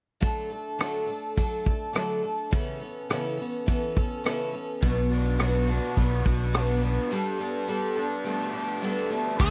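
Nostalgic and open-road in spirit, this folk rock and heartland rock excerpt moves at a steady 105 BPM in a straight 4/4, cut from a longer piece in D major. A picked twelve-string acoustic guitar carries the accompaniment from the start, its fresh strings giving a shimmering, octave-doubled sparkle, while a vintage drum kit with dark cymbals and a punchy kick plays crash, hi-hat, kick and rim click alongside it. At 4.8 seconds a picked electric bass arrives with a round, amped tone, joined by a raw garage guitar whose double-tracked, overdriven riff sits lower in the mix. The chords travel from D through Aadd9/C# and Bm to Gadd9, with a break beginning at 7.1 seconds. Just as the passage closes, a biting lead guitar strikes a single overdriven A4 at 9.4 seconds. The sound is dry and close, in the manner of a 1970s studio, with the drums, bass and acoustic guitar up front.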